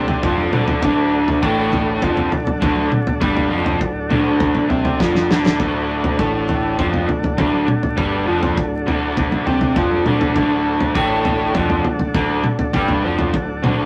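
An overdriven, lo-fi, double-tracked garage guitar riff sits up front from the first second, over sustained tonewheel organ chords turning through a slow rotary speaker and a round, dark picked bass in the background, all holding on D. This hazy, kaleidoscopic psychedelic rock cut moves at 101 BPM in a straight 4/4 in D mixolydian, with a damped, rolled-off 70s kit of tight kick, medium-tuned snare and toms, plus very quiet, close congas, and a drum fill at 5.0 seconds. A moderate studio reverb and vinyl crackle frame this fragment of a longer piece.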